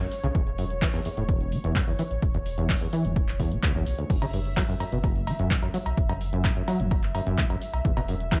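A straight 4/4 acid house groove at 128 BPM runs through this hypnotic, trippy passage in F# phrygian, cut from a longer piece: a punchy, tape-warm electronic kick enters at 0.3 s over an analog drum machine playing cowbell, crash cymbal, handclaps and hi-hat. Up front, a squelchy, gritty sawtooth acid bass with a resonant filter sweep plays a saturated riff through lush chorus and delay, while a deep, round sine sub bass pumps beneath it. A smooth, detuned sawtooth pad sustains soft chords high above with chorus and sidechain pumping, all set in light reverb.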